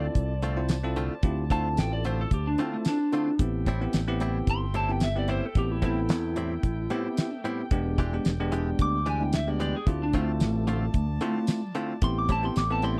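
A lightly driven lead guitar leads this smoky, mournful soul blues solo in A minor at 111 BPM, its slightly broken-up, compressed tone carrying the melody from A3 up to D6 over a straight-eighth 4/4 groove. A bell-like tine electric piano supplies accompaniment throughout and slips in a brief fill between 6.9 and 7.7 seconds, while a twangy, direct-recorded clean electric guitar with a vibrato effect adds stabs. The damped 70s drum kit enters at 0.2 seconds with a fat snare, tight kick, hi-hat and tambourine sitting up front, alongside a fingered electric bass ranging from E1 to E2. A punchy horn section with a smooth top holds sustained chords in the background. The harmony moves from Dm7 to Am7, through a tense E7#9, and back to Dm7 and Am7, all captured in a dry, close 1970s-style studio sound in this short cut from a longer piece.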